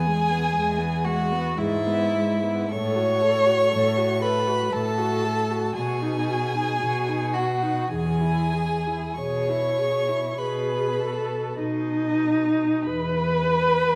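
Classical slow romantic movement for string quartet in E major and 3/4, with a tender, warm mood and a rubato pulse of 44-62 BPM, where a clear, close first violin carries the smooth, even melody with vibrato, a second violin adds an expressive second line with portamento, a rich, distant viola gives soft-attack accompaniment, and an up-front cello holds a smooth bass with light vibrato, all four playing throughout this 14-second passage cut from a longer piece, set in a wet recital hall reverb, with a brief new section arriving at 12.9 seconds as the harmony returns to E.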